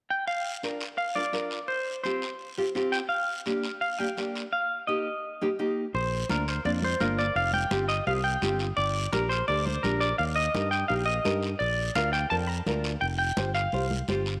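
This cumbia excerpt is joyful and danceable, moving at a brisk 170 BPM in straight 4/4 and set in Bb major. A bright, clean semi-hollow electric guitar carries the melody from the start, picked up front with a splash of spring reverb. Beneath it, a full-bodied nylon-string guitar fingerpicks the accompaniment with a deep classical tone, while a raspy guiro scrapes close by. At 5.9 seconds a growly fingered electric bass joins up front, along with damped, thin-skinned congas played with soft hands in the background. The harmony cycles through Bb, Fsus2, Gm and Eb, and the whole performance sits in a small room with a moderate echo chamber reverb.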